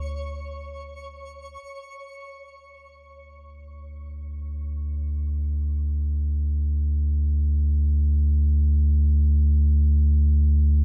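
Floating in free time, this ambient fragment, cut from a longer piece, feels peaceful and unhurried. A round analog bass holds a deep D2 for the full 10.8 seconds, its sawtooth-and-sine tone dark and up front, striking with a fast attack and then sustaining. For the opening 1.6 seconds, a twinkling granular texture hovers far above between C#5 and C#6, its bright FM sparkle carrying an octave-up shimmer, a slow attack, a long release and its own built-in reverb. Once that shimmer fades, the bass carries on alone, giving the rest of the passage a dry, close, warm intimacy.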